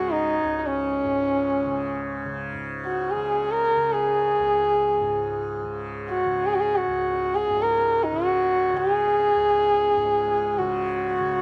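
Dry and close in the manner of a 1970s studio, this radiant, serene Hindustani classical fragment in free time puts a dark, nasal, woody bowed sarangi up front, its gliding portamento lines carrying light vibrato and ringing sympathetic strings, over a softly plucked, buzzing, shimmering tanpura drone that sits low beneath it throughout the 11.4 seconds.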